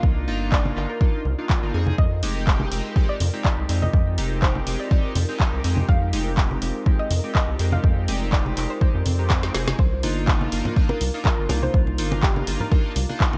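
Deep and warm, this deep house excerpt moves at 123 BPM in 4/4 with a light 16th-note swing, cycling from Cm11 to Fm9 and back to Cm11 at 9.8 seconds. A punchy, layered electronic kick sits up front, joined from 0.5 seconds by a kit of handclaps, dark hats and a woody snare, while close, dry congas played with soft hands add a bright acoustic touch in the background. The rubbery, hollow square bass bounces with a resonant filter pluck and sidechain pumping, and a glossy, retro chorused polysynth supplies pulse-width stabs roughened by vintage 12-bit sampler grit and delay. Above them, a soft, round pluck carries the melody through analog chorus and digital delay, with a cloudy, blurred granular pad drifting behind it. A very quiet electronic swell and a drum fill lead into the return of Cm11, after which a moody, detuned analog pad enters at 10.9 seconds with chorus and phaser. The mix is bright and 1980s-styled, with light reverb and digital ambience.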